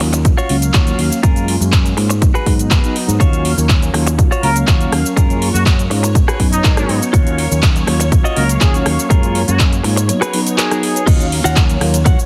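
A punchy electronic kick sits up front in a straight 4/4 groove over a tape-kissed house kit of metallic hats, handclaps, rim click, shaker and crash, with the hats, percussion and cymbals pumping under sidechain. Fingered electric bass, a dark, detuned sawtooth synth brass with chorus, phaser and cassette coloring, and a bright, twangy clean guitar riff with warbly pitch drift all pump beneath a low-pass filter, giving this funky, sensual filtered disco house a smoky haze. A lush vintage string machine slips into the background at 3.2 s, a smooth trumpet section with light vibrato and digital delay carries the melody from 4.4 s, and a drop arrives at 11.1 s, all inside a heavily compressed, radio-like sound with light digital ambience.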